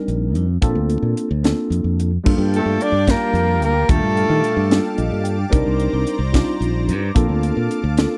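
Tine electric piano opens this electric jazz fusion excerpt, its clean tone colored by phaser, as bright, growly fingered bass and a crisp, high-tuned drum kit with tight kick, hi-hat, snare and crash join almost at once. The groove moves at 73 BPM in a straight 6/8, soaring and funky, over chords moving from Cm9 to Bbmaj7, then Gm9 and Ebmaj9#11. At 2.2 seconds a lush, thick unison pad enters softly with chorus, sustaining airy, detuned chords high above, and at 2.6 seconds a breathy soprano saxophone takes the melody with vibrato and tape echo, while a breathy tenor saxophone with scooped notes and a soft attack plays a second line an octave lower. The horns stop at 5.0 seconds, and the electric piano slips in a short fill before the harmony returns to Cm9 and Bbmaj7. The sound is dry and close, with drums, bass and soprano up front in a 1970s-style studio, and the passage is cut from a longer piece.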